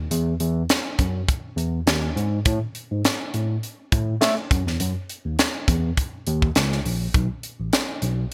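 A barky, overdriven tine electric piano carries the bass line through a combo amp with lush chorus, sitting up front beside a crisp fusion drum kit of hi-hat, tight kick and high-tuned snare treated with gated reverb, giving this short, upbeat excerpt of polished 1980s jazz-funk pop a lightly swung, urban feel and a bright digital sheen.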